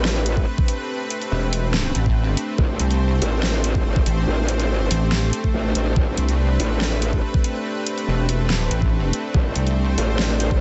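Dry and dark-topped, this menacing, chaotic heavy wobble dubstep excerpt in A minor moves at 142 BPM with a half-time feel, its saturated, growling, formant-filtered growl bass and a detuned, pulsing pluck wobble bass entering at 1.3 seconds sitting up front beside an overdriven, knocking electronic kick drum and a dubstep drum kit with hi-hat and a huge snare, while a lush supersaw pad holds sidechain-pumped chords over a mellow, lo-fi, warbling tape-like pad in the background, and a brief electronic swell at 5.3 seconds leads into a short kick dropout from 5.5 to 6.0 seconds.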